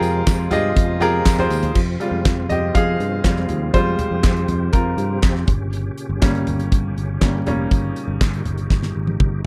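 A bright, woody upright piano sits up front in this short excerpt of piano-driven pop, taking a solo from 1.8 seconds over an Fmadd9 chord that shifts to Gdim at 5.5 seconds, with a bittersweet, earnest mood at 121 BPM in F minor. A growly picked electric bass and a dry 70s drum kit with a fat snare, tight kick, toms, hi-hat, handclaps and crash drive it, ending in a drum fill at 8.7 seconds. Behind them, a reedy tonewheel organ with key click, chorus vibrato and fast rotary speaker holds sustained chords, and a jingly tambourine plays only in the opening moments, all in a close, dry 1970s-style studio sound.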